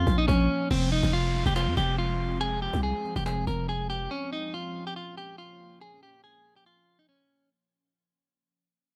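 A growling, buzzy 808-style bass sits up front in this dark, menacing half-time hip hop and trap fragment, dropping out at 4.1 seconds just after a woody, saturated cajon that stays in the background. A clean, picked electric guitar carries the melody over an ethereal, airy pad with ensemble chorus and built-in reverb, while an electronic downlifter passes through. The piece fades out from 0.7 seconds within a dark digital ambience.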